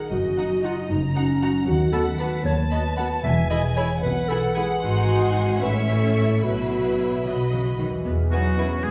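A playful, whimsical cinematic film cue in E major at 76 BPM in a straight 6/8, where a rich, vibrato-laden chamber violin section carries the melody over a second violin line, focused violas, a softly placed cello section and a clear, intense double bass section, while a ringing concert harp spins arpeggios in the background and a mellow clarinet weaves a second line, before an airy harpsichord and a bright oboe slip in at 8.3 s, all heard from further back in a reverberant recital hall that gives this fragment a magical glow.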